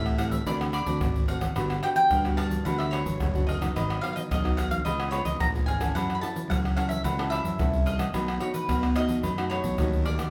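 A round, picked mandolin opens this sunny, joyful samba-and-choro excerpt on its doubled strings, over a bright, fingerpicked classical nylon-string guitar whose finger squeaks are audible and a punchy, fuzz-overdriven fingered electric bass. From 0.1 seconds a compressed, saturated percussion section sits up front, with a tight surdo, egg shaker, pandeiro, tamborim and agogo bells. The band plays live in one room under a wet large-studio reverb, moving from D7 through Gmaj7, G#m7, C#7 and F#m7 to B7.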